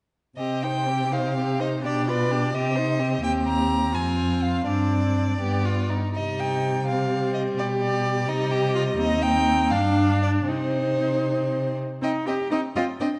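The dark, expressive cello stands out up front in this stormy, urgent excerpt from a quick classical-period string quartet movement in 6/8 with a rubato feel, its bass line bowed with a soft attack, vibrato and sliding portamento. Above it, the first violin carries the melody with a rich, smooth and even tone, also close up front. The second violin adds a focused second line with vibrato, while the viola fills in the accompaniment with a warm, smooth and even sound. All four players enter together at 0.4 seconds and play through to 13.1 seconds, and the harmony moves mostly between C minor and G chords with brief turns to F minor and a suspended G. The quartet sits in the moderate reverb of a scoring stage with softened highs, and a short new section begins at 12.0 seconds just before the cut.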